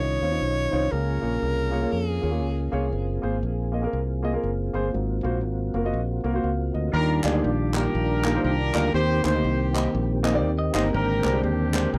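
A swung 120 BPM groove in 4/4 drives this hopeful, soulful uptempo gospel excerpt, anchored by a punchy, round fingered electric bass and a natural-toned grand piano, while a mellow tonewheel organ with fast rotary speaker, light overdrive and chorus vibrato holds sustained chords in the background. A breathy, close-miked tenor saxophone with subtone and tape echo opens the melody briefly before the music settles into Eb major at 6.9 s, where a tight, smooth-topped horn section takes over the tune and group handclaps with a hollow, live-room sound join at 7.2 s. A twangy, clean picked electric guitar adds a short second line near 10.6 s, all captured in a dry, close 1970s-style studio sound with light reverb over lush chords such as Dbmaj9, Gbmaj9#11 and Abmaj9#11.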